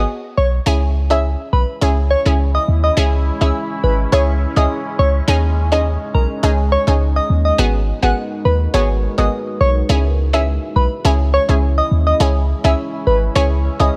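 A digital ambience frames this tough, sultry dancehall excerpt at 104 BPM, where a deep, boomy 808-style bass sits up front beneath a bright, detuned analog pluck with a filter sweep and moving notch and a round, gentle FM lead with chorus and tape echo, while a moody, wave-folded pad with ring modulation and built-in reverb enters at 1.4 s to hold sustained chords over a G#m7, C#m and D#7sus4 progression.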